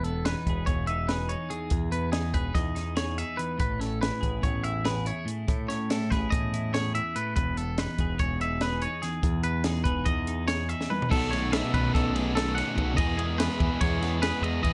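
A twangy, up-front electric guitar spins bright arpeggios over a bright twelve-string electric guitar bathed in spring reverb, in a wistful yet bright math rock and midwest emo cut from a longer piece, moving in 9/8 at 288 BPM in E major through Emaj7 and Amaj9 chords. A growling picked bass with overdrive and a dry, compact cocktail drum kit with a high-tuned snare, punchy kick and dark cymbals drive it along, and a drum fill at 10.8 seconds ushers in a double-tracked, crunchy overdriven guitar riff at 11.1 seconds over B7sus2 before the music settles back on Emaj7. The production is dark and warm with light reverb.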